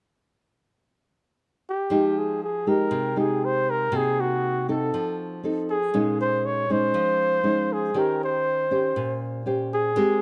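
Melancholic and wistful, this short excerpt from a longer bossa nova piece moves at 119 BPM in a straight 4/4, set in F minor with tuning at A4 = 441 Hz. A mellow flugelhorn carries the melody from 1.7 seconds, its close-miked, vibrato-touched jazz tone sitting up front as a solo voice in a compact range from Gb4 to Db5. The nylon-string guitar joins at 1.9 seconds with thumb-plucked classical accompaniment, acoustic and warm, spanning from Bb2 up to C5 and also placed up front. After a chordless opening, the harmony unfolds through Fm9, Cm7b5, F7, Bbm11 and Eb6, lending the passage a searching, bittersweet colour. Light reverb gives the two instruments a gentle sense of space.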